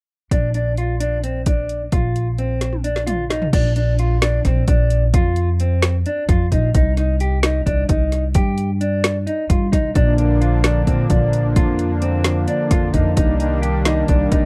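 An intricate, driving progressive instrumental in 7/8, cut from a longer piece, opens with electric guitar, upright bass and drums together. The clean, dark guitar plays fingered arpeggios with tape echo and sits lower in the mix, while the pizzicato upright bass, strung with steel and woody in tone, stands up front. The electronic, layered drum kit brings a punchy kick, dark hi-hats, snare, toms and crash, re-recorded in a small room and placed close, with a fill from 2.6 to 3.5 seconds leading into the longer second section. At 10.0 seconds a smooth analog pad of detuned sawtooth and triangle waves enters with a slow attack, sustaining wave-folded tones treated with chorus. The recording is dry and intimate in the manner of a 1970s studio, and the harmony moves between Bb and C minor chords.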